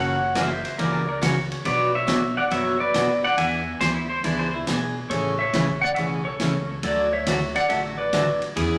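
Swung eighths at 139 BPM in 4/4 drive this cheerful, down-home western swing excerpt. A full-bodied, picked jumbo acoustic guitar, bright with fresh strings and finger squeak, plays alongside a woody, thumpy pizzicato upright bass and a natural-sounding big-band kit on hi-hat, ride and medium-tuned snare that joins at 0.4 s. Up front, a clean, twangy lap steel carries the melody with fingerpicked slides and volume swells, while a compressed, warm pedal steel adds a second line with its own swells from 0.4 s to 5.0 s, over chords moving F#7, Bmadd9, E7, Amaj7 and D inside a wet, large studio reverb.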